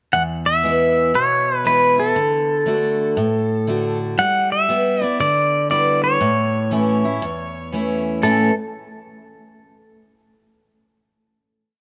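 Country in A major at 118 BPM with a swung, sunny, down-home feel: a twangy, compressed pedal steel guitar played with fingerpicks carries a song-like motif melody with volume swells and slide, over a full-bodied dreadnought acoustic guitar picking an alternating bass and strum with audible finger squeak, both up front in light reverb, moving through E, D, G6 and A before both parts stop at 8.5 seconds and the final chord lingers to 10.3 seconds.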